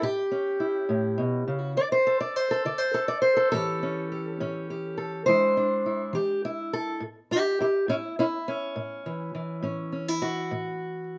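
Fingerpicked parlour steel-string acoustic guitar opens alone and up front, its dark, boxy tone carrying a soulful, rollicking country blues in a straight 12/8 over A7 and E7 changes, with a brief break from the chords around 1.8 seconds. A slapback echo trails the guitar, and light reverb adds to the open-air sound of a recording made outdoors. From 7.0 seconds the guitar moves into a solo passage over A, before this short cut from a longer piece ends at 11.2 seconds.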